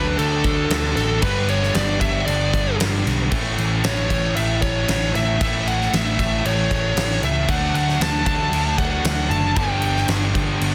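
A dark, high-gain lead guitar carries the melody between A4 and A5 through distortion and analog delay, stopping at 10.1 s in this powerful, anthemic hard rock fragment at 115 BPM in A mixolydian. A huge arena kit with a fat snare, punchy kick and crashing cymbals sits up front from 0.2 s, and a growly, amped picked bass anchors the low end. Three guitars play riffs beneath it over D, G and A chords: a biting overdriven one, a bright scooped high-gain one and a very quiet double-tracked distorted one, all under light studio reverb and a dense, heavily limited modern master.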